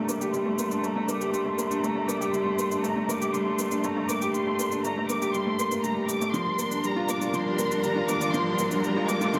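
Piano and strings electronica in a straight 4/4 feel, this short excerpt from a longer piece is moving and intimate, building steadily throughout its 9.4 seconds. Up front sits a felt-muted upright piano playing a soft, mellow riff, with a warm, thin-felt character. Behind it, a distant string quartet holds rich, bowed sustained chords with vibrato and portamento, while a dark studio violin section carries the melody high above, its smooth top shaped by a low-pass filter and a filter sweep that runs the length of the passage. A deep, rumbling detuned saw bass is barely audible underneath, and a layered electronic shaker, trimmed by a high-pass filter, enters at 0.1 seconds. The harmony moves from Gmadd9 to Bb6 at 6.3 seconds, and an electronic riser in the background joins at 7.3 seconds, all set in a lush hall reverb.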